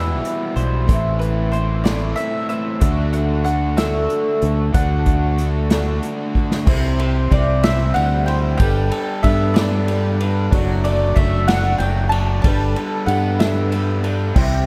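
A light reverb and small-room ambience frame this folk rock and heartland rock fragment, cut from a longer piece, with an open-road, jangly mood at 62 BPM in a straight 6/8, in G major. A woody, double-strung mandolin carries the melody through a diffuse ambient delay. Behind it, a picked twelve-string acoustic guitar, boxy yet shimmering with octave-doubled strings and a lush chorus, sits in the background. A double-tracked garage guitar plays an overdriven riff with a touch of chorus, while a fingered electric bass sounds dark, round and punchy up front. An unplugged acoustic kit played with bundle sticks offers a medium-tuned snare, punchy kick, hi-hat, ride and crash. A very quiet, brilliant grand piano with long sustain enters at 2.8 seconds, a drum fill at 6.4 seconds leads into the second section at 6.7 seconds, and the chords move from Em7 and Amadd9 through D, C, Gadd9 and D/F#.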